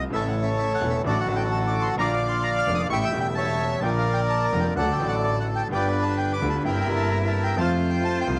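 Passionate and tense, this brief tango fragment moves at 129 BPM in 4/4 with a rubato feel, led by a reedy bandoneon melody sitting up front. A concert grand piano with a deep, smooth, vintage tone supplies the accompaniment while a woody bowed double bass with light vibrato holds the low end, and at 5.7 s a bowed cello joins with an expressive second line full of vibrato and portamento. Light reverb lends a gentle sense of space as the harmony travels from A through Bb and D to a close on F.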